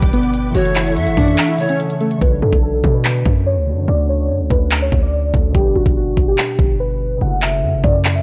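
Trap-flavored hip hop at 144 BPM in a half-time feel, melancholic and menacing, where warbly lo-fi synth keys with chorus carry the melody over filtered thumb-plucked concert harp, a punchy, heavy 808-style bass and an up-front trap kit of knocking kick, crisp hi-hats and handclaps, while lush bowed strings hold chords only until 2.2 s, a breathy bamboo pan flute with tape echo adds a brief second line from 0.6 s, the kick drops out from 1.4 to 2.2 s and the hats fall silent from 2.2 s on, all in a dry, gritty small-room sound over chords moving from G and F#m7 to Bm7 and Dmaj7.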